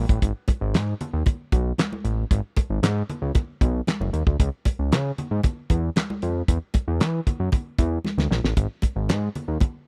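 A fat, detuned sawtooth analog bass sits up front with a fast attack and sustained notes, a filter sweep shaping its thick tone in this slick, danceable early-eighties boogie funk excerpt cut from a longer piece. A damped 70s drum kit with a tight kick, fat snare, hi-hat and handclaps drives alongside it, while ringing, medium-tuned congas enter at 0.5 seconds and sit in the background. The dry, close small-room recording captures a drum fill from 8.0 to 8.6 seconds.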